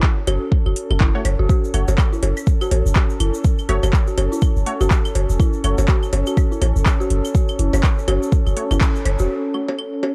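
Clinical and hypnotic, this short cut from a longer minimal techno track sits in a drop with a swung 4/4 groove and a dry, gritty cassette-tape character. An overdriven electronic kick drum sits deep and up front, joined by a booming analog drum machine whose handclaps and metallic hi-hats carry overdrive and the grain of a small room, while layered claves, cowbell and bongos add tape-warm percussion through analog delay. A punchy sine sub bass with a pitch-drop attack pumps against the kick, and from 1.5 seconds a grainy, bright egg shaker ticks quietly in the background. Above, a warbling, nostalgic pad of detuned sawtooth and triangle tones breathes in slowly with chorus and its own reverb, and an eerie, inharmonic FM bell repeats a narrow riff with a long, decaying release and echoing delay. From 1.1 seconds a muted, filtered dub chord stab plucks softly on an F# minor chord through chorus and delay, and the whole band lands an accent at 8.8 seconds.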